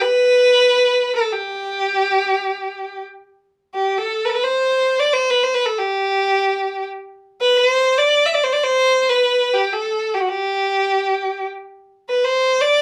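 Passionate and stately, this short passage of Persian classical music unfolds in free time within dastgah mahur on G, tuned to A4 = 438 Hz. A single bowed violin carries the whole solo from 0.0 to 12.8 s, its line moving between F#4 and E5. The tone is rich, smooth and even, colored with vibrato. Though the violin sits up front in the mix, its sound also carries a distant, slightly removed character. A moderate small-room reverb surrounds the player with a live, intimate ambience, and the clip is cut from a longer performance.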